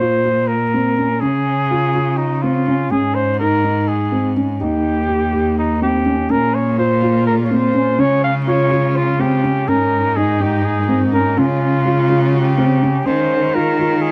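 A clear, up-front flugelhorn carries the melody with vibrato and scooped notes in this restless, shimmering excerpt of contemporary chamber music, set in a straight 7/8 at 248 BPM in Eb mixolydian. A soft, boxy felt-muted upright piano plays intimate arpeggios beneath it, while a bright, biting solo cello with an airy bow supplies the bass line. At 6.3 seconds a woodwind section slips in behind with tight sustained chords, all wrapped in light reverb and a dark production.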